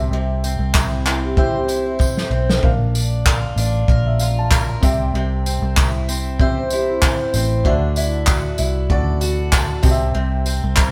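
Carefree and heartfelt, this acoustic pop excerpt moves with a light sixteenth-note swing, played by a band together in one room with light reverb. A shimmering, octave-doubled twelve-string acoustic guitar and a woody upright piano with short sustain carry the accompaniment from the start. Beneath them, a dark, round, foam-muted fingered electric bass sits up front. The natural country drum kit joins at 0.4 seconds with a punchy kick, a medium-tuned snare, handclaps and tambourine, and it plays a fill early on, while a separate jingly, close and dry tambourine sits in the background. A mellow vibraphone, struck with soft mallets and motor off, adds a ringing second line in the background at 1.1 seconds and returns at 6.4 seconds. The harmony moves through C, Bb and Dadd9 before settling back on C.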